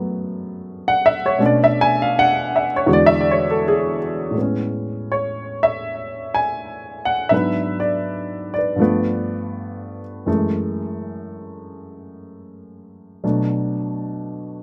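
A dark, mellow baby grand piano plays solo jazz at 81 BPM in 4/4 with a swung feel, its intimate, up-front tone carrying audible action noise and short sustain through rich ninth and seventh chords like F#m9, Amaj9 and G9, dry and outdoors with little reverb, giving this brief cut from a longer piece a warm, playful mood.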